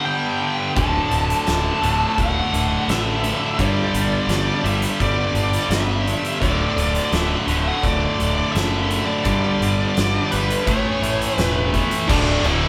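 Quiet-loud alternative rock at 85 BPM in D major, cathartic and bittersweet, this excerpt pairs a bright, double-tracked heavy high-gain guitar riff up front and a dark, distorted high-gain lead melody with slapback echo over a clean, twangy fingered electric guitar arpeggiating in the background, joined at 0.8 seconds by a punchy fuzz-overdriven picked bass and an oversized low-tuned acoustic kit with a fat snare, boomy kick and dark cymbals pumping in a big room, all played live together in a large studio with moderate reverb as the chords move from G and D through A to a closing Dsus2.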